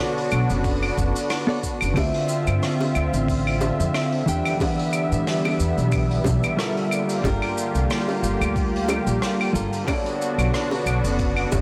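A lightly swung sixteenth-note groove at 91 BPM in 4/4 carries this wistful, warm sunset chillout passage, a fragment of a longer piece tuned slightly low to A4 = 437 Hz. A vintage brush drum kit in a small, pumping room supplies claves, hi-hat, rim click and shaker with a rolled-off top, while a gritty, thumpy sampler-style electronic kick joins at 0.6 s, and round, low-tuned, saturated bongos enter at 2.0 s. A woody, dark upright bass plucked on gut strings anchors the low end. A clean, fingered electric guitar with tape echo and a lush, thick, nasal sawtooth unison pad, detuned and chorused, with a soft attack and long release, hold the harmony from the first moment, the bright pad sitting up front. The chords move through Bm9, Dm9, Em9 and Gm9 before returning to Bm9, all bathed in a lush hall reverb, and the whole recording is blown-out and overdriven.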